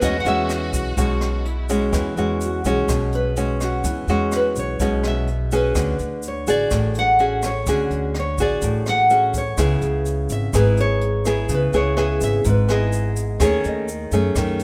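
A straight, easy bossa nova groove in 4/4 carries this breezy, romantic passage, cut from a longer piece. A brushed jazz drum kit marks time with hi-hat, a boomy kick and rim clicks, while a grainy, bright tube shaker sits close and dry in the background, and a woody pizzicato upright bass on steel strings anchors the low end. A small, up-front nylon-string guitar fingerpicks the accompaniment throughout, and a second nylon-string guitar, warm, classical and fingerpicked, carries the melody. A rich chamber violin section adds a focused, vibrato-laden bowed second line only for the opening 1.9 seconds, after which the melody guitar takes a solo that runs through the rest of the excerpt over chords moving from E69 through Dmaj7#11 and C#m7 to F#m69/D#. Light reverb gives the natural studio room a gentle sense of space.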